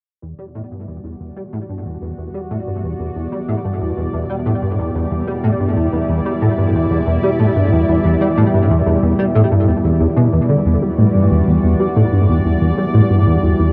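A cassette-recorded home production with a short, wet booth ambience gives this excerpt from a longer piece a hazy, intimate character. It is ambient, sequencer-driven space music in E minor at 92 BPM in a straight 4/4, tuned slightly low to A4 = 437 Hz, with a cosmic, mysterious mood that opens on an Em7 chord. A punchy, funky analog bass plays a riff from 0.2 to 13.7 seconds, its sawtooth and square-wave tone shaped by a fast-attack filter pluck that decays, thickened with ensemble chorus and tape echo. Alongside it, a lush, detuned unison pad holds sustained chords across the same span, its slow attack and long release giving a full-bodied, bright sheen through chorus and shimmer reverb. Both parts sit up front and fade in over the opening stretch until 10.7 seconds, where the music moves into a new section that carries through to the close.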